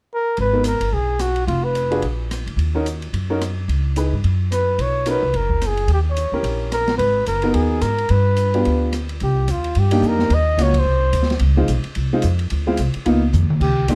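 A warm flugelhorn opens this moody, swinging small-group jazz excerpt at 218 BPM, playing the lead with light vibrato, soft attacks and scooped notes in a close, up-front sound wrapped in plate reverb. Pizzicato upright bass and an open jazz drum kit join at 0.4 seconds, the bass woody and forward with steel strings, the kit dark and smooth from a small room with a boomy kick, medium-tuned snare, ride, hi-hat, crash, rim clicks and toms. A clear, boxy upright piano enters at 0.5 seconds to fill in the harmony beneath the horn. The tune sits in G# minor with rich chords such as G#m9 and D#7b9, then moves to C minor at 9.2 seconds, where a band accent lands at 10.7 seconds and a drum fill arrives at 13.3 seconds. The flugelhorn steps away between phrases, returning briefly just before the end, and the whole production feels dark and warm under light reverb.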